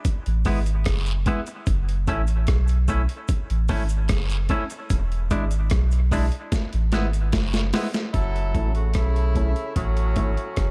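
Heavy and spacious, this dub reggae excerpt moves at 74 BPM in a straight 4/4 feel in F# minor, cut from a longer piece. A gritty, pitched-down sampler-style drum kit sits up front with a thumpy kick, high-tuned snare, rim clicks and hi-hat, overdriven and compressed, with a fill from 6.5 to 8.1 seconds closing the opening break. Beneath it a round sine sub bass holds deep, sustained notes between E1 and B1, while a faint, band-limited layer of cabasa and guiro runs through dub echo until 8.1 seconds. A bright, clean semi-hollow electric guitar picks chords through a low-pass filter and echo, moving from F#9sus4 to F#m7 and E7, and a filter sweep shapes it once the new section begins. At 8.1 seconds a distant, roomy horn section with light vibrato enters as a second line, its echoes filling a mix that otherwise carries little reverb.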